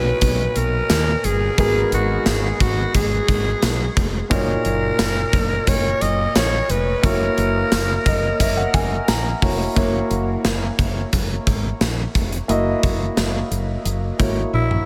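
A breathy, raspy alto saxophone opens over a concert grand piano and a woody fretless bass, setting a nostalgic yet urgent 1980s-style pop mood at 88 BPM in a straight 4/4. The saxophone sits up front with bright vibrato and scooped notes, its lines trailed by delay as it carries the melody until 9.4 seconds, then returns briefly near the close. A gated 80s drum kit joins at 0.2 seconds with a punchy kick, a medium-tuned snare, hi-hat, tambourine and toms in a bright stone room, while the round, dark fretless bass anchors the low end. The intimate piano, with audible action noise and long sustain, moves through Bmaj7, G#m9, D#m7/F# and F#7 and plays a fill leading into a new section at 9.8 seconds. A drum fill marks the final moments of this fragment cut from a longer piece, all bathed in a huge ambient reverb that gives the mix a dreamy, soaked quality.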